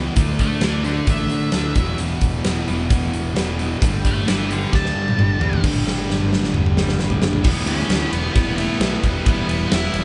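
A dark, brooding slice of quiet-loud alternative rock cut from a longer piece, its band captured live in one large studio room with moderate reverb and a muffled top end, moves at 132 BPM in E minor. A bright cranked stack guitar and a compressed, dark overdriven guitar play the riff in the background over a direct-and-amped, overdriven picked bass, while a huge, up-front acoustic kit with a pumping room, bright cymbals and a punchy kick enters at 0.2 seconds. A fuzzy, distorted octave-fuzz lead guitar solos from 0.4 seconds through the opening section, drum fills mark the shift into new sections, and a very quiet double-tracked overdriven guitar joins the riff at 5.6 seconds before the harmony settles on E minor.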